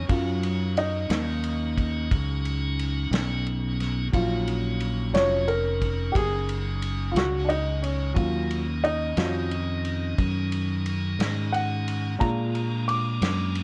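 A warm, up-front baby grand piano leads this soulful, brooding slow blues in a straight 12/8, over a round, punchy fingered electric bass and a piping, scooped tonewheel organ with key click, holding sustained chords through a slow rotary speaker. A dark, small-room soul drum kit with a tight kick, a medium-tuned snare and ride cymbal sits softly beneath, its top end rolled off. The harmony rests on Ebm7 until turning to Bb7 at 12.2 seconds, and the whole fragment is coloured by light reverb and the worn, warbling pitch drift of old cassette tape.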